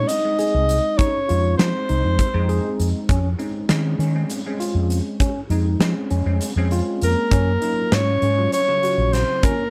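Progressive instrumental band music in 7/8, intricate and brooding, with a breathy, whispered soprano saxophone melody joined by a second line on ringing vibraphone set back in a boxy room, both phrases heard at 0.0 s and again at 7.0 s. Underneath, a clean bell-like electric piano plays chorused chords, a worn, slightly out-of-tune electric piano adds lightly overdriven arpeggios, and a round, dark fretless bass sits up front with a chorus shimmer. A huge arena drum kit with a punchy kick and pumping hall sound drives this short excerpt over Fm7, Bbm11/F and Ebm7, while a very quiet, grainy tube shaker adds texture.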